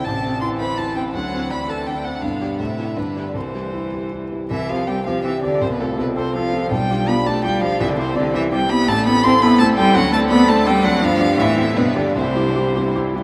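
A huge, wet reverb with an eight-second tail places this recording in a vast, echoing space, though the grand piano's action noise can still be heard up close. This quick, spirited and graceful classical-period movement for piano trio moves in three with a rubato feel, and it is cut from a longer piece. A single dark, woody violin carries the melody with vibrato. A single cello plays a soft-attacked, floating second line bowed sul tasto, its tone rich and pure. Beneath them the clear, intimate piano supplies the accompaniment with long sustain, continuing briefly after the strings stop at 12.9 seconds. The harmony moves through minor and dominant-seventh chords that return to the home chord, and a second section begins at 4.5 seconds.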